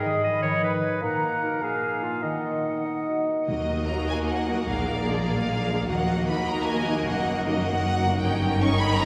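Bathed in a wet church reverb, this restless, urgent excerpt from a dramatic romantic orchestral movement in 6/8 moves with rubato. It opens with a clear clarinet, a distant oboe and an airy small flute group over a mellow bassoon, while a ringing concert harp plays arpeggios throughout. At 3.5 seconds the strings take over: an expressive, up-front violin section carries the lush, vibrato-laden melody over a second violin line, smooth violas, and focused cellos and expressive double basses in the background, as hard-mallet timpani strike briefly and a very quiet, vintage-toned French horn section holds sustained chords.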